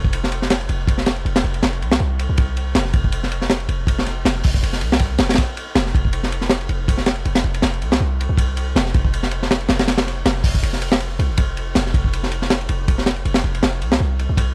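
A swung sixteenth-note breakbeat drives this frenetic, nostalgic drum and bass and jungle excerpt at 160 BPM in 4/4. The crunchy, small-room acoustic kit sits up front with a punchy kick, a high-tuned snare and dark hi-hat and ride cymbals, its top end rolled off. Beneath it, a deep, boomy 808-style sine bass with a noise layer, fast attack and mellow decay holds the low end, both parts running from start to finish as one drop that begins again at 5.4 s, all in a dry, gritty hardware sound with little reverb.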